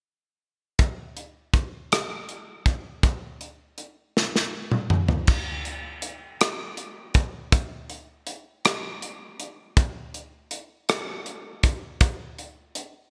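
A modern acoustic drum kit enters at 0.8 s, sounding up front in a small room with a tight kick, a medium-tuned snare, rim clicks, hi-hat, toms and crash cymbal, setting a reverent yet jubilant gospel mood in a slow 6/8 at 54 BPM counted in dotted quarters. A drum fill from 4.2 to 5.3 s carries the groove into a new section. The production is bright in a 1980s digital style, with light reverb, and the passage is cut from a longer piece.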